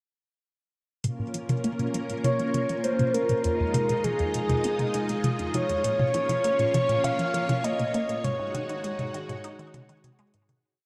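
Ambient, sequencer-driven space music in Bb minor at 100 BPM, expansive and mysterious, built on a lush string machine ensemble that holds sustained chords through ensemble chorus and shimmer reverb, moving from Bbm to Fm7, back to Bbm and on to Ab7sus4. A squelchy, resonant blip pluck repeats a 16-step sequence colored by phaser and delay, with a filter sweep across it, while a soft vintage rhythm box supplies metallic closed hats and a high tom. From 2.2 s to 9.4 s a breathy, flute-like synth lead sits up front with warbling vibrato and call phrases, all within a plate reverb's long tail as the piece fades out from 7.4 s.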